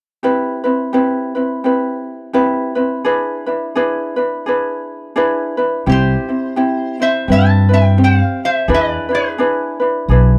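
A bright, metallic lap resonator guitar, played with slide and fingerpicks, carries the nasal melody from 5.9 seconds in this sunny, dreamy Hawaiian piece at 85 BPM with a lilting swing. Before it, a light, fingerpicked ukulele plays alone from 0.2 seconds, with a warm tone, picking through Cmaj7 and E7 chords in C major. A woody, thumpy upright bass on gut strings enters at 5.9 seconds with dark pizzicato notes, all three instruments sitting up front in a dry, close 1970s-style studio sound.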